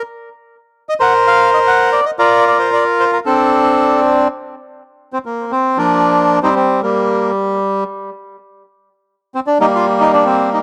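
Tango for a lone bandoneon, tense and passionate, moving with a rubato feel in 4/4. The bandoneon plays the whole fragment by itself, its reedy, dark, smooth tone placed up front and carried by an analog delay. Suspended and added-note chords such as Bbsus24 and Amadd11/C colour the opening stretch, before the music darkens into a minor mode at 4.3 seconds and settles on Gmadd11 from 6.4 seconds. The room adds a moderate studio reverb, while the recording itself sounds dry and gritty, as if captured through hardware. Cut from a longer piece, it breaks off at 10.6 seconds.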